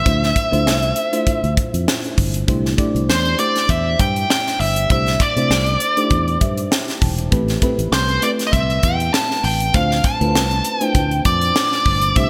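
A nasal lead guitar with a parked wah carries the melody up front, its dark, overdriven tone sitting between C5 and A5 in this breezy, glossy slice of polished 1980s jazz-funk pop, cut from a longer piece. Beneath it, a bell-like FM electric piano supplies sparkling accompaniment with a fast attack and decaying notes, dressed in lush chorus, and it steps forward with a fill from 6.1 to 7.3 seconds. A fingered electric bass, bright and growly, adds a direct, amped low end. A crisp fusion drum kit sits up front with a high-tuned snare, tight kick and hi-hat, its gated reverb giving the airy studio sound extra polish. The chords move from Dm7 through C6 and Am7 before returning to Dm7, with a light swing on the sixteenths, all set in a lush hall and a bright, digital 1980s-style production.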